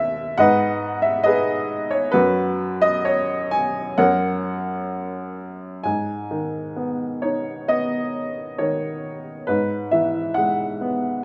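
Reflective and wistful, this short fragment of a longer classical piece is a lyrical solo for upright piano, moving at 62-70 BPM in 4/4 with a free, rubato feel. The clear, woody piano sits up front and spans D#2 to G#5, passing from G#m through a chordless stretch to F# before settling into G# minor at 5.9 s and coloring it with Eadd9/G# at 9.5 s. A moderate recital-hall reverb gives the instrument a natural sense of space.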